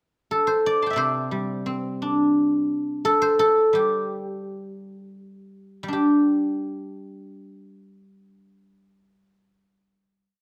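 The rhythm moves freely in a rubato 2/4, and it slows between 2.7 and 6.0 seconds before settling onto a closing chord that sustains from 6.0 seconds. This short, complete piece is Chinese traditional music for solo guzheng, serene and flowing in mood. The guzheng, played with fingerpicks, enters at 0.3 seconds and carries a modal melody with ornaments over its own low-string accompaniment, spanning C3 to C6. Its tone is silvery and ringing, and it sits up front. Close, detailed microphones and light reverb frame the instrument until it ends at 10.4 seconds.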